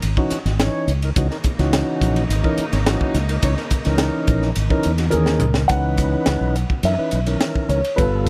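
Driving and slick, this short cut from a longer electric jazz fusion piece moves at 106 BPM in a straight 4/4, sitting in C# dorian over C#m69 before shifting to C#m9 at 5.7 seconds. A mellow fretless electric bass, round and punchy with a subtle chorus, sits up front alongside a crisp fusion drum kit whose high-tuned snare, punchy kick, hi-hat, ride and toms breathe in a pumping small room. A tonewheel organ enters just after the start, clean and clear through a slow rotary speaker, while a lush studio string section holds bowed, vibrato-tinged chords in the background from 1.2 seconds. A drum fill at 5.1 seconds coincides with the entrance of a dark concert grand piano carrying the melody, its intimate, boxy tone revealing audible action noise and deep bass. The strings drop out as the second section begins, leaving piano, organ, bass and drums to carry the groove to the end.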